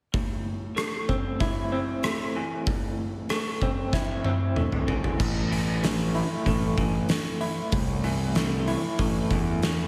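A slightly broken-up, lo-fi electric guitar through a small old amp plays brooding arpeggios with tremolo and slapback echo over an oversized, low-tuned acoustic drum kit with a boomy kick, fat snare and dark cymbals in a pumping stone room, and after a drum fill from 3.9 s a fuzz-overdriven picked electric bass enters at 5.2 s, giving this quiet-loud alternative rock excerpt a big arena sound.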